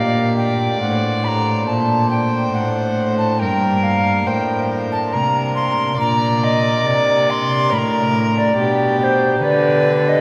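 In a straight three-four lilt, this solemn, flowing baroque-style sonata movement pairs an airy, up-front tenor recorder melody with its woody tongued chiff against a period-style violin's reedy second line touched with light vibrato, while a rich, close gut-string cello carries the bass and a thick, romantically voiced pipe organ on foundation stops fills out the accompaniment, the ensemble set in the long, wet reverb of a church or concert hall.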